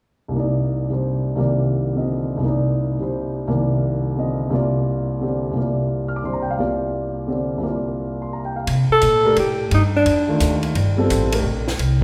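Bathed in the long, wet reverb of a recital hall, this fragment of spiritual, searching modal jazz in C dorian swings in 3/4 at 173 BPM, with an intimate grand piano, its action noise audible and its notes sustaining long, moving between Cm9 and Bbadd9/C alone until 8.7 s, when a woody pizzicato upright bass and a compact cocktail kit with dark cymbals and a high-tuned snare join, and a breathy alto saxophone with light vibrato, subtone and scooped notes enters at 8.9 s for a brief jazz solo that ends at 10.6 s.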